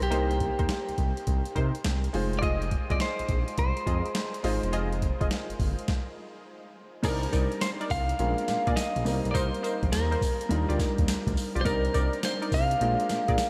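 Swung sixteenths at 104 BPM in 4/4 drive this slick, confident new jack swing R&B excerpt in C minor: a gritty, thumpy boom bap sampler-style drum kit sits up front with crash, hi-hat, kick, snare and tambourine, alongside a smooth gliding synth bass with portamento, an open baby grand piano, a clean picked electric guitar melody with spring reverb and tape echo, and a punchy, detuned polysynth comp with chorus in the background, and after a stop from 5.9 to 7.0 seconds the music moves through Cm9, Bb7 and Ebmaj9 in a dreamy mix soaked in huge ambient reverb.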